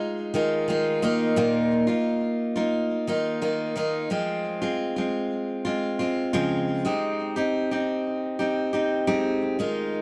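Pop instrumental with an easy-going, sunny mood, carried by a solo picked steel-string acoustic guitar that sits up front with a bright, auditorium-sized tone and digital delay. Suspended Bb chords give way after 4.1 seconds to a second section that moves through Dbmaj7 and Abmaj7, all in a steady, straight 4/4. The production is dark and warm overall, set in a moderate studio ambience, and the excerpt is cut from a longer piece.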